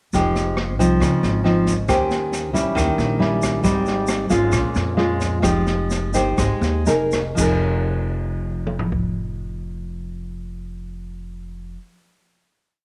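A complete, intimate and wistful bossa nova piece in F minor opens with all four parts together: an up-front, full-bodied nylon-string guitar playing thumb bass and syncopated plucked chords, a woody pizzicato upright bass on gut strings, an open jazz drum kit in a bossa brush groove, and a grainy, bright egg shaker. The tempo sits between 116 and 136 BPM in 4/4 with a straight feel, and the band begins slowing down at 3.6 s as the harmony moves through Fm9, Dbmaj9, Eb6 and Eb7b9 toward Abmaj7, Bbm7 and back to Fm9. The thumpy bass outlines a dotted root-and-fifth line beneath the guitar's deep classical tone. The drums carry dark cymbals, a medium-tuned snare and a boomy kick with a rolled-off top, while the band-limited, vintage-sounding shaker sits low in the mix. The piece settles on a final chord at 7.4 s, the shaker drops out just after, and the drums stop at 9.0 s, so guitar and bass ring out alone in a moderate plate reverb.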